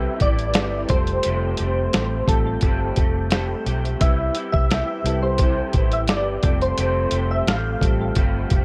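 A digital ambience wraps this dreamy, laid-back indie and bedroom pop excerpt at 87 BPM, where mellow electric-piano-like synth keys carry a gentle chorused, delayed melody over a slightly broken-up electric guitar through a small old amp with chorus and vibrato, a soft synth-keys bed with cassette-tape coloring, a dark, foam-muted fingered bass, and a muffled, pitched-down sampler drum kit with a thumpy kick sitting up front from 0.2 seconds, all moving between Cmaj7 and Fadd9.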